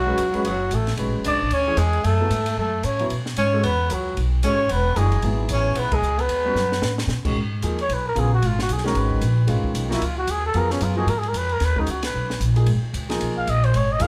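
Modal jazz at a brisk, swinging 226 BPM with a searching, spiritual mood, where a raspy, gritty growling trumpet carries the melody over a breathy tenor saxophone second line with vibrato and scooped notes, a woody, growly upright bass up front, a polished grand piano with long sustain, and a dry cocktail drum kit with dark cymbals and a punchy kick; after a band accent at 5.9 seconds and a drum fill, the saxophone drops out at 7.1 seconds and the music shifts from B dorian to G# dorian as the trumpet takes a solo from 7.4 seconds, all in a moderate large-studio reverb that captures the band playing live in one room.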